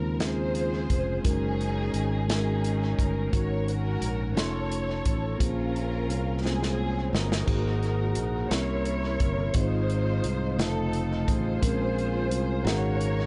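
Dark, woody strings carry a lush, distant melody with tape echo over a clean tine electric piano, a direct fingered bass and an airy, punchy country drum kit in this reverent yet jubilant slow gospel excerpt at 58 BPM in 6/8, where a drum fill at 6.4 seconds leads to a soft, flute-like tonewheel organ entering at 7.5 seconds through a fast rotary speaker, all in a dry, echo-heavy, dull-topped mix moving through rich chords such as Dbmaj7, Bbm9 and F7b13.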